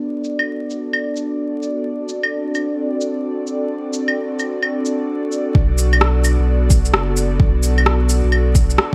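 This future garage piece moves at 130 BPM in 4/4 with a swung sixteenth-note feel, carrying a wistful, melancholic mood. An airy, breathy pad with a vintage, warbling chorus sustains soft chords from Bm7 to D7, its slow attack and long release pulsing under sidechain pumping while a filter sweep runs through the opening 5.6 seconds. From 0.2 seconds, a tape-warm layer of electronic cabasa, claves, shaker and rim click sits up front, low-pass filtered and set in studio ambience. At 5.5 seconds, a deep electronic kick and a round sine sub bass arrive together as the harmony returns to Bm7, the bass pumping under the same sidechain. Vinyl crackle, light reverb and digital ambience lend the short cut a dusty, intimate haze.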